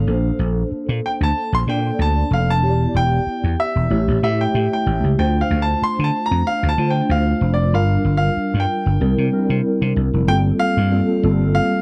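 A dry, close 1970s-style studio sound frames this breezy, upbeat excerpt of polished 1980s jazz-funk pop at 94 BPM with a light sixteenth-note swing, where a clear grand piano takes a melody solo until 10.3 seconds over mellow tine electric piano chords treated with ensemble chorus and a growly, punchy slap bass, moving through Bbmaj9, Em7, A7, Dm7, Gm7 and C7 before settling on Gm11.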